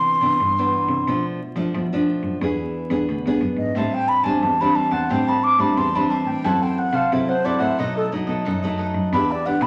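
Lively yet yearning, this samba excerpt in E minor moves at 89 BPM, with an airy, woody baroque flute carrying the melody up front, its vibrato and crisp attack leading a solo across the whole passage. Beneath it, a full-bodied, fingerpicked nylon-string guitar, also up front, with audible finger squeak, supplies the accompaniment, while a close, focused bowed cello holds the bass with its own vibrato, and a picked cavaquinho with a warm, crisp edge joins the accompaniment at 3.8 s. A large studio reverb gives the parts a wet sheen, and vinyl crackle sits over the harmony as it moves from Cmaj9 through Am7 and B7 toward Em7.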